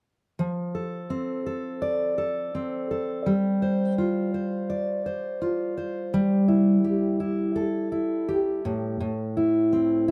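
A fingerpicked steel-string acoustic guitar plays from 0.4 seconds, its full-bodied jumbo tone sitting up front as it moves through F6, G7sus4, Em(add11)/G and Am. This heartfelt, sunny pop passage moves at an unhurried 84 BPM in a straight 4/4. A moderate studio reverb lends the guitar a sense of space, and the clip, cut from a longer piece, ends at 10.1 seconds.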